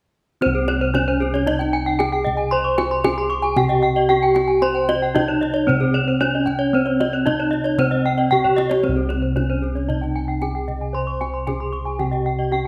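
Brilliant and hypnotic, this Balinese gamelan passage cut from a longer piece sets a dark, smooth bronze metallophone melody over round, beating bossed gongs up front, while two more metallophones spin out arpeggios, one bright and airy up front and the other shimmering mid-forward with paired-tuning beats, and a tight, close kendang sits in the background, adding a drum fill at 8.3 seconds, the whole ringing through a wet recital-hall reverb.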